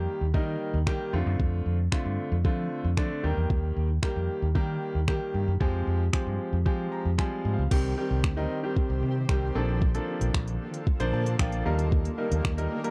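Dance-pop at 114 BPM with a carefree, upbeat feel, this dry, close 1970s-style studio recording pairs a clear concert grand piano chording from Eb through F6 and Fmadd9 to Cm and Bbmaj7, adding fills at 6.7 and 10.9 seconds, with a growly, punchy fingered electric bass and a smooth R&B drum kit of soft kick, smooth hats, finger snaps and crash, while piano and bass pump against the beat and an ethereal shimmering pad with chorus drifts in the background from 8.6 seconds.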